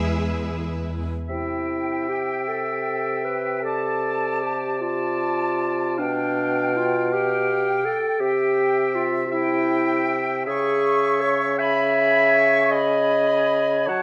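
A warm solo clarinet stands out in this lyrical, serene classical excerpt in a rubato 6/8, entering at 1.3 s alongside an airy flute section, a clear, distant oboe and a mellow bassoon, after a brief opening chord of vibrato-rich bowed strings (two violin sections, violas, a lush background cello section and an up-front double bass) that ends by 1.1 s, the whole heard in a moderate recital-hall reverb.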